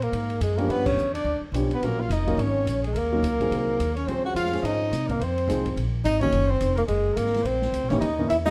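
A breathy tenor saxophone carries the melody from the first moment of this smoky, late-night small-group swing and bop excerpt, its subtone, vibrato and scooped notes sitting up front. A clear, close-miked trumpet plays a second line above it with light vibrato, while a woody, thumpy pizzicato upright bass and an open jazz drum kit with dark cymbals, a boomy kick and a rolled-off top drive a fast 213 BPM swing in 4/4. A baby grand piano enters at 0.6 seconds with natural accompaniment, just before the whole band hits an accent at 0.8 seconds. The harmony moves through rich jazz changes, from a rootless Ebm7 through Gbmaj7 and Dbmaj7 to a closing Bbm7b5. A moderate club reverb gives the group the feel of a small, intimate room.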